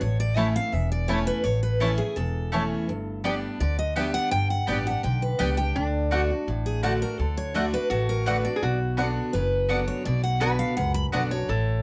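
Lively and joyful, this short bluegrass excerpt moves at a brisk 167 BPM in a straight 4/4, cut from a longer piece. A picked steel-string dreadnought carries the melody up front with a bright, full-bodied tone and audible finger squeak, while a second picked dreadnought with fresh strings supplies the accompaniment beneath it. The upright bass, played pizzicato, sits up front with a woody, warm sound, and a mandolin enters at 0.4 seconds with bright double-string stabs carrying a slapback echo. At 5.8 seconds a lap resonator guitar joins with a metallic, nasal slide line played with fingerpicks, adding a second voice over the chords. The harmony moves from A through G and D to B minor, and the dry, close sound recalls a 1970s studio with little reverb.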